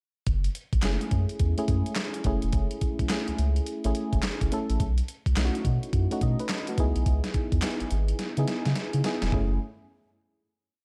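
Bathed in digital ambience, this short, punchy and bouncy new jack swing R&B piece rides a crisp, up-front 8-bit drum machine with a thumpy kick, a fat snare layered with handclaps, hi-hat and toms in a hard-swung beat, a deep, thick saturated sub bass playing a swung synth-funk line with muted ghost notes, and a dark, warbling vintage FM electric piano with tremolo that plays syncopated rootless chord stabs with grace notes and short fills, until a drum fill at 8.2 seconds leads into a final F#m7 chord at 9.3 seconds.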